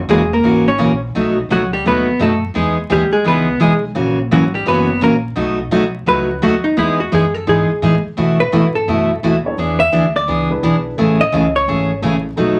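A short excerpt of a club-room recording with wet reverb and a layer of vinyl crackle, this playful, swinging country piece moves at 171 BPM in E major with a swing feel on the eighth notes. A dark, clean, compressed hollow-body jazz guitar takes the solo up front over a bright, full-bodied picked steel-string acoustic guitar and a woody, thumpy pizzicato upright bass on gut strings, with changes running from F#7 and B9 through Emaj7 to Amaj7. A mellow, boxy upright piano slips in quietly behind them at 8.5 seconds.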